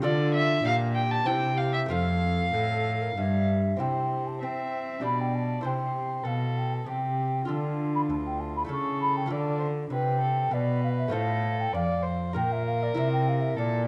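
A straight 3/4 pulse at 98 BPM carries this radiant, serene baroque-style sonata movement with continuo, cut from a longer piece, opening in F major and moving to C major at 3.8 s. An airy wooden flute with vibrato and tongued notes sings the melody, a dark, nasal gut-string violin plays a reedy second line, and a fingerpicked lute with delicate, bright double strings accompanies. Beneath them a rich, close period-style cello anchors the bass, all wrapped in a recital hall reverb.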